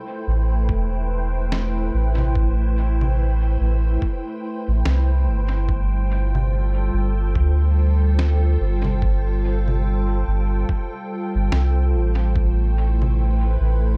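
Deep and spacious, this short ambient dub excerpt moves at 72 BPM in A minor with a gentle 16th-note swing, as a calm, organ-like pad with chorus and its own reverb holds dark, slowly evolving chords from Am7 to G7sus4 and back, a round, up-front sub bass enters at 0.3 seconds, and a muffled, thumpy sampler-style kick joins at 0.7 seconds, followed at 1.5 seconds by a pitched-down snare and congas trailing dub echo, all kept dry and close with tape-tinged drums.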